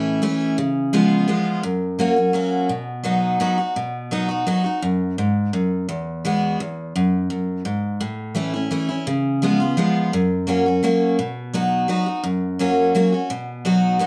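A wet studio reverb with a short tail surrounds a single picked steel-string acoustic guitar, placed up front with a bright, full-bodied dreadnought tone and some finger squeak. This is a lively, rustic bluegrass fragment cut from a longer piece, moving at 170 BPM in a straight 3/4 and centred on B major, with the instrument tuned to A4 = 437 Hz. The solo guitar ranges from E2 up to F#4, opening on a progression of A, C#7, F# and B. Around 4.8 seconds the harmony shifts to F#sus2 and Eadd9 before the opening progression returns. From 12.2 seconds a new closing passage moves from F# to B until the fragment ends at 14.1 seconds.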